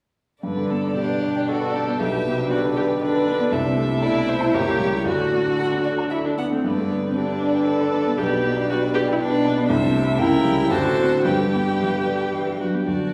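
A quick, cheerful and graceful classical-period movement for piano quintet in G major, taken from a longer piece, moves in a flexible, rubato 3/4 at 116 BPM. A rich, smoothly bowed violin with vibrato carries the melody while a second, more focused and distant violin and a clear, even cello with vibrato play supporting lines. An up-front baby grand piano with an open tone and long sustain provides the accompaniment, joined at 1.0 s by a focused viola with vibrato. The whole quintet is heard from further back in a recital hall with a lush, reverberant wash.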